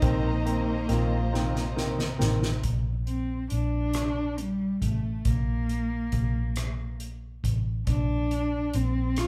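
A slow 6/8 pulse at 46 dotted-quarter beats per minute sets this romantic, heartfelt pop ballad in Bb major, carried by a soft-mallet drum kit with a fat snare, a boomy kick, rim clicks and hi-hat, plus a drum fill from 1.3 seconds. Underneath, a foam-muted vintage fingered electric bass sits up front with a round, amped tone, while a woody, solo cello sings the heartfelt melody with vibrato throughout. In the opening bars, over a Cm7 chord, a polished concert grand piano with audible action noise and long sustain plays the accompaniment, a background French horn section adds a light-vibrato second line, and a lush, distant string section holds sustained chords. The piano stops just before 2.6 seconds, and the horns and strings drop out at that point as the harmony settles on Bb, leaving cello, bass and drums to carry the rest. The band sounds as if it is playing live in one large studio room with moderate reverb, and the passage is cut from a longer piece.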